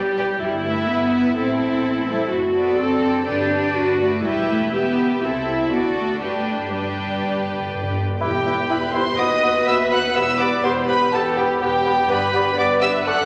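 A sul tasto violin section carries the melody in this graceful, spirited classical-period movement for symphony orchestra, its warm, lightly vibrato tone sounding close and intimate, with a second violin line beneath it from 0.2 seconds. Violas fill in the accompaniment with a soft attack, while dark, woody cellos and a pure, floating double bass section hold the bass in a straight four-beat metre. Timpani played with medium mallets sit in the background of the opening section and play a fill from 6.2 seconds. At 8.2 seconds the harmony turns toward a minor colour, the timpani fall away, and the winds enter: a mellow, present cor anglais, a very quiet hollow wooden flute, a clarinet with a smooth top, a distant, roomy bassoon and a French horn section holding sustained chords in the background. The whole orchestra sits in a generous scoring-stage reverb, and the passage is cut from a longer piece.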